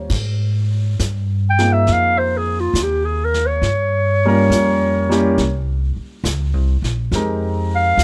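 Jazz ballad in Ab major at a slow, swung 68 BPM, this intimate, romantic fragment opens with a warm grand piano's chords, a woody, thumpy pizzicato upright bass and a vintage kit played with brushes on dark cymbals. At 1.5 s a breathy, mellow clarinet enters up front with subtone and light vibrato, soloing over changes that move from Ab6 through Gm7b5 and Bbmadd9 to Fm11. A light reverb gives the whole a natural studio room feel.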